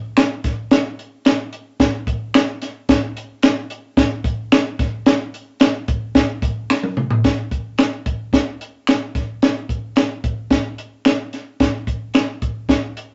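A straight 4/4 soul groove at 110 BPM drives this urgent, passionate excerpt, where an up-front compact cocktail drum kit with punchy kick, high-tuned snare, hi-hat and toms sounds dark and smooth with a rolled-off top, a close, human finger snap sits in the background, a drum fill at 6.7 seconds leads into the second section at 7.2 seconds, and a moderate small-room reverb holds the whole piece in an intimate space.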